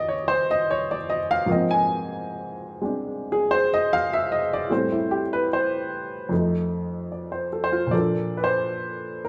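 A close, intimate baby grand piano sits up front in a large studio's lush reverb, its natural tone carrying audible action noise and a short sustain, as if played live in one room. This brief solo jazz passage, cut from a longer piece, swings with a warm mood, the piano moving through Eb7, Ab69, Am7 and F7 across a range from Eb2 to Ab5. At 7.9 seconds it turns to a new section on Bbmaj7, and the clip ends at 9.3 seconds.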